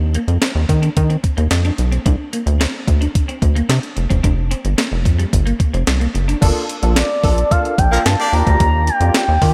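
A rubbery, hollow square-wave bass opens this late-night, slick slice of early-eighties boogie funk, sitting up front with a bouncy, nasal filter pluck as a clean 12-bit drum machine arrives with thumpy kick, medium-tuned snare, handclaps, hi-hat and crash. Over suspended chords, a bright, twangy clean electric guitar picks a compressed riff, softened by ensemble chorus. At 6.4 seconds the harmony settles onto richer ninth-chord colours and a barky tine electric piano takes over the accompaniment through a combo amp. A smooth, expressive synth lead enters at 7.0 seconds, its dark sawtooth tone carrying vibrato, a moving notch, chorus, phaser and a diffuse ambient delay. A clear, loose horn section with light vibrato and octave doubling adds a brief second line in the background at 7.9 seconds, and the whole dreamy mix is soaked in a moderate church reverb.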